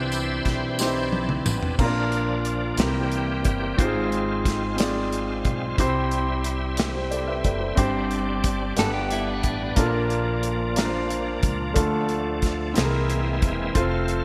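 A bright, shouting tonewheel organ leads off this excerpt with a short solo, its lightly overdriven chords colored by a slow rotary speaker and chorus vibrato, while a warm concert grand piano with deep bass sits up front beside it. This is slow, uplifting and jubilant gospel at 60 BPM in 6/8, in C major, with a modern studio drum kit entering at 0.1 seconds and playing a fill from 0.8 to 1.8 seconds, its dark, smooth sound, medium-tuned snare and tight kick treated with gated reverb. A jingly tambourine joins only briefly at the opening, and a woody, growly pizzicato upright bass on steel strings anchors the low end throughout. From 8.8 to 9.8 seconds a clean, picked electric guitar adds a short compressed second line with subtle chorus and digital delay. The harmony moves through colorful changes such as Cmaj7, Fm/Ab, Gsus4 and a closing Caug7, all set in a lush hall reverb with a bright 1980s-style digital production.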